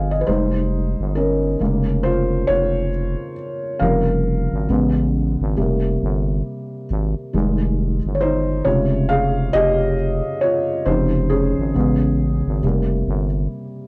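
Lo-fi hip hop in F minor at 68 BPM, with a swung 16th-note feel and a nostalgic, hazy mood, this piece from a longer work pairs a felt-muted upright piano with a growling FM bass from the start. The piano sounds soft, dark and intimate, and it carries a solo passage from 0.3 seconds while moving through Fm7, Bbm7/F, Amaj7 and Abmaj7/F voicings. The thick, sustained bass sits up front with a fast attack, while moderate studio reverb and cassette tape coloring give the recording a vintage haze.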